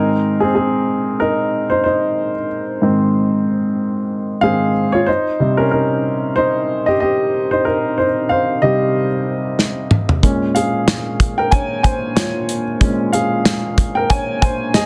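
A woody, up-front upright piano carries this warm, anthemic piano-driven pop cut in Ab major at 93 BPM, its light sixteenth-note swing moving through Ab, Cm and Bbm7 as the piano opens the section on its own. At 9.6 seconds an acoustic country drum kit joins with a fill lasting until 10.2 seconds, its punchy kick and medium-tuned snare sitting close in a small-room sound alongside hi-hat and toms. Moderate studio reverb surrounds the parts, and the dense, heavily limited modern master keeps the short passage full and forward.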